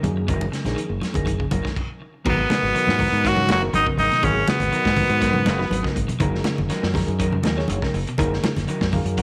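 A raspy, forceful tenor saxophone leads this defiant, intense afrobeat excerpt from 2.3 to 5.9 seconds, shadowed by a whispered, breathy bass trombone, over a gritty, saturated breakbeat kit with a punchy kick, round fingered bass, background congas, a picked clean guitar with spring reverb and tape echo, a dark fingered guitar playing stabs, and a worn, slightly out-of-tune reed electric piano with fast tremolo that plays a fill at 8.7 seconds, all set in a small-room echo after a brief stop at 1.8 seconds.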